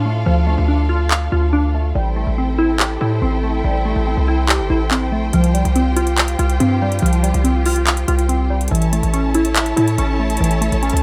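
A half-time trap pulse at 142 BPM in 4/4 drives this dark, menacing hip hop excerpt, tuned to A4 = 438 Hz, where a hard-hitting, saturated 808-style bass sits up front beneath a glassy, detuned wavetable pluck with chorus and a distant, lush bowed string section sustaining chords over Dm, Am7, Csus4 and A, while the trap drum kit of metallic hi-hats and handclaps enters at 1.1 s within a break that runs to 5.3 s, set in a moderate studio reverb.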